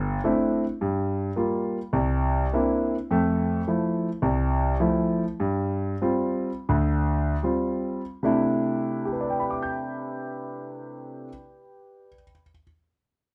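A concert grand piano plays alone in this short, playful solo jazz excerpt from a longer piece, its intimate, up-front tone carrying deep bass and audible action noise. The swung, rubato phrasing moves through C6/9, Gm7, C9, Fmaj7 and G7sus4 before settling back on C6/9 at 8.2 seconds, with the pace easing between 3.1 and 8.2 seconds. A moderate club reverb and dark, warm production give the natural sound a cozy, late-night air.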